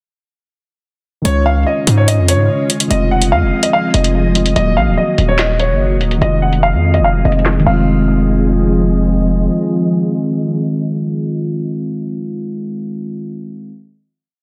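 Muted, felt-like synth keys with chorus open this dark, tense half-time drill track at 145 BPM in F phrygian, joined at 1.3 s by a worn, boxy baby grand piano looping a tape-echoed melody, a punchy 808-style bass with long sliding sub notes, and an electronic drum kit of skipping metallic hats, fast rolls, a woody snare layered with claps and crash cymbal under a filter sweep through the breakdown, while an ethereal detuned pad drifts in with its own reverb before a final hit from 7.9 s leaves the keys ringing in a dense, heavily limited, low-passed mix.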